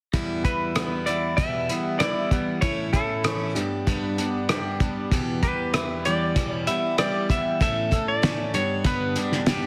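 Folk rock and heartland rock in E dorian at 96 BPM, reflective and wistful, where a picked plugged-in steel-string acoustic guitar with audible finger squeak picks through the Em, A and G changes up front, a twangy edge-of-break-up electric guitar riff runs through a phaser, a cloth-damped, thuddy drum kit with a fat, softly clipped snare, tight kick, hi-hat and rim click sounds muffled and gritty, and from 0.5 seconds a clean, hollow-bodied semi-hollow electric guitar carries the melody with slapback echo, all set in light studio reverb under a dense, heavily limited modern master in this fragment cut from a longer piece.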